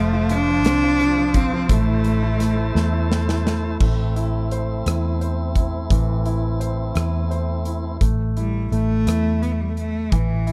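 A bowed cello with vibrato opens this aching, melancholic six-eight pop ballad, its focused, close tone touched with delay and sitting up front over a clear concert grand piano, a full tonewheel organ and a round, foam-muted fingered electric bass, with a modern drum kit joining a moment later. The organ holds sustained chords with a lightly overdriven edge, key click and subtle chorus, while the piano's accompaniment has deep bass and short sustain. The punchy, amped bass and the polished acoustic kit, with bright cymbals, a medium-tuned snare, a tight kick, hi-hat and rim clicks, anchor the gentle sway as the harmony moves from F to A minor. A drum fill arrives at 2.7 seconds, and the cello falls silent shortly after. The organ drops out at 8.0 seconds before the cello's melody returns at 8.4 seconds over piano, bass and drums. The dark production wraps it all in a small, lightly reverberant room, and the recording is cut from a longer piece.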